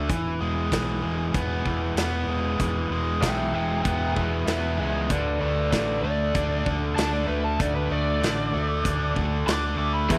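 A straight, steady 4/4 groove drives this confident, swaggering classic rock passage, cut from a longer piece. The big acoustic rock drum kit sounds natural in a studio room, with hi-hat, a punchy kick and a medium-tuned snare, while a dark, round, overdriven fingered electric bass holds down the low end. Up front, a bright cranked stack guitar plays an overdriven, picked riff over an E chord that moves to D5 at 5.1 seconds. At 3.2 seconds a lead guitar through a small cranked amp enters with a warm, overdriven solo melody in a high register, touched with slapback echo. Just as the passage closes, at 10.1 seconds, two more guitars join the riff in the background: a double-tracked, compressed overdriven electric guitar and a warm, overdriven semi-hollow guitar colored by a phaser. Light reverb and studio ambience give the mix a subtle sense of space.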